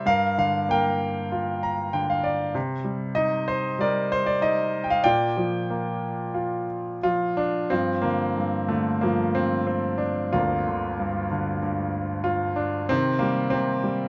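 A clear, intimate concert grand piano carries this cool, brooding fragment of a lyrical classical solo in a rubato 4/4, with deep bass, long sustain and audible action noise caught by close, detailed microphones in light reverb, a brief fill at 1.3 seconds, and a shift into a new section at 7.7 seconds as the harmony circles through Gm7 and Cm7 before settling on Cm at 12.9 seconds.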